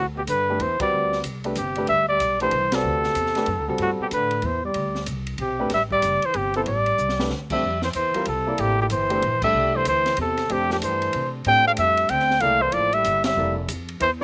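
Hypnotic and searching, this modal jazz passage swings briskly in 3/4 at 188 BPM, shifting from D mixolydian to F major at 7.6 s, with a drum fill just before the change and band accents punctuating the groove. A mellow trumpet with vibrato and slapback echo carries the melody up front, while a trombone with soft, scooped notes plays a second line beneath it, and a growly pizzicato upright bass anchors the low end. A clear, woody upright piano enters at 0.5 s with its own slapback echo, and an acoustic drum kit with dark cymbals, a high-tuned snare and a boomy kick completes a dry outdoor recording cut from a longer piece.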